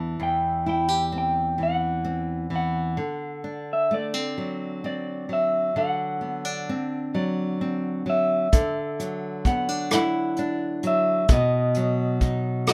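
Acoustic folk-pop ballad in a slow, straight 6/8 at 43 BPM, melancholic and heartbroken, where a dark, slightly broken-up electric guitar through a small old amp picks a high melody with harmonic tremolo over a fingerpicked, classical nylon-string guitar sitting up front, moving through Emadd9 and D7 before a soft brush kit of hi-hat, tight kick and rim click enters at 8.5 seconds as the harmony shifts to Dadd9 and B, all in light reverb in this cut from a longer piece.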